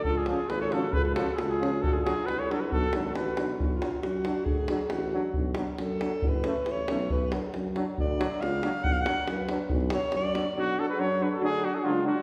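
A wet, reverberant hall sound surrounds this fiery, restless excerpt of Balkan brass band music in 2/4 at 138 BPM, set in B dorian with a raised fourth and pushing faster throughout. A mellow cornet with light vibrato carries the melody up front, and the alto saxophone, which plays the second line all along, takes a vibrato-laden solo from 3.6 s before the cornet returns at 10.6 s. Underneath, a punchy, vintage tuba holds the bass and a tight, up-front davul drives the rhythm until 10.5 s, while a brilliant trombone and a warm euphonium sit distant and roomy in the background.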